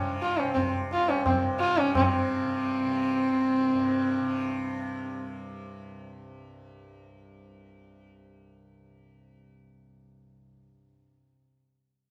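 A dark, nasal sarangi sings a gliding, close-miked devotional line with light vibrato until 5.1 seconds in this meditative Hindustani classical excerpt in seven, over a buzzing, shimmering tanpura drone that sustains to 11.4 seconds, while a high-tuned, ringing tabla sounds from a distance only until 2.1 seconds in a moderately reverberant studio space.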